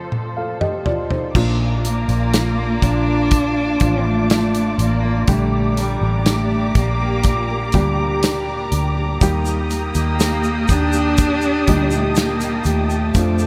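The dark, woody cello carries the melody from 1.9 seconds: a single bowed player with vibrato, set at a distance and trailed by a diffuse ambient delay. This tender, heartfelt pop ballad, an excerpt from a longer piece, moves at 61 BPM in a straight 4/4 in Bb major, opening on a drum fill before the foam-muted, round, amped electric bass enters up front at 1.3 seconds, with the fingerpicked dreadnought acoustic guitar following just after. The acoustic drum kit sits forward in a studio room, with a punchy kick, medium-tuned snare, hi-hat, toms and crash cymbal. Behind them, a natural, warm baby grand piano plays accompaniment and a lush, veiled string section playing con sordino with a soft attack holds sustained chords, while the full-bodied guitar arpeggios shimmer with ensemble chorus and delay. A grainy, mellow tube shaker joins at 9.2 seconds as the harmony moves from F through Bb and Gm to Eb, and the whole dreamy mix is soaked in a huge ambient reverb.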